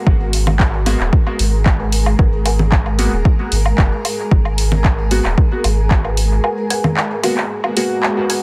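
Dub techno at 113 BPM in G# minor, deep and cavernous, where a cloudy, blurred granular pad with sidechain pumping sustains a G#m9 chord beneath mellow chord stabs carrying chorus, phaser, 12-bit sampler grit and dub echo, while a round sub bass and an up-front punchy kick anchor the groove, overdriven woodblock and congas and a deep house kit with handclaps and dark hats echo through the mix, and a muted, detuned filtered stab riff drifts in the background at 1.8 and 6.0 seconds, all within a dense, heavily limited master cut from a longer piece.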